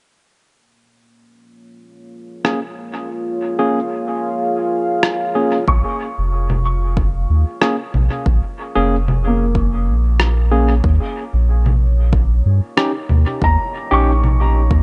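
An overdriven tine electric piano opens this spacious, deep ambient dub excerpt at 2.4 seconds, its barky, gritty stabs sitting up front through a low-pass filter and dub echo, joined at once by a muffled, pitched-down electronic rim click and congas, overdriven and compressed with their own dub echo. A dark, moody ambient pad follows with sustained chords, slow to bloom and long to fade, its chorus and built-in reverb giving a deep backdrop over Bbm7 at a loping 93 BPM in 4/4 with a light sixteenth-note swing. At 5.7 seconds the second section arrives as a soft, round dub sub bass sits up front and a layered, tape-warm electronic kick drum lands beside it. At the same moment a felt-muted upright piano adds intimate, mellow arpeggios through a low-pass filter and dub echo. The harmony moves to Eb7 near 10.8 seconds, and the whole piece carries light digital ambience and a gently rounded top end, in Bb dorian.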